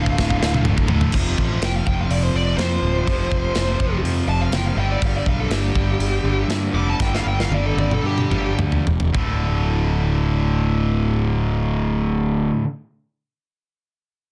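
A dark, distorted lead guitar, wet with plate reverb and analog delay, takes a bluesy solo from 1.1 to 9.1 seconds in this menacing, driving hard rock cut in D minor, moving at around 105-125 BPM and slowing down from 5.0 seconds. Beneath it, two bright, overdriven picked guitars (one a cranked stack in the background) play the low riff alongside a round, fuzzed-out bass sitting up front. A tight metal drum kit with a big-room sound, rolled-off top and soft-clipped snare drives the piece with fills. At the start, a very quiet reedy tonewheel organ with fast rotary shimmer and a faint, double-tracked sludgy guitar appear only briefly, all under a dense, heavily limited modern master.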